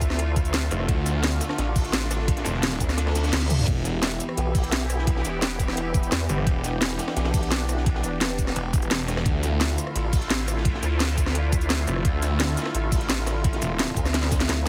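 A snarling, distorted saw bass growls up front in bursts at 0.7, 6.3 and 11.9 seconds over a nasal, wobbling vowel-sweep bass, a knocking electronic kick, a cracking drum and bass kit with crisp hats, a gritty breakbeat kit in the background and a bright, evolving resonant pad with sidechain pumping. This aggressive, futuristic dark technical drum and bass excerpt runs at 172 BPM and moves from Dm to Em and back. The kick drops out briefly while a reverse cymbal plays and a drum fill enters, all heavily compressed with a dry, radio-like sound.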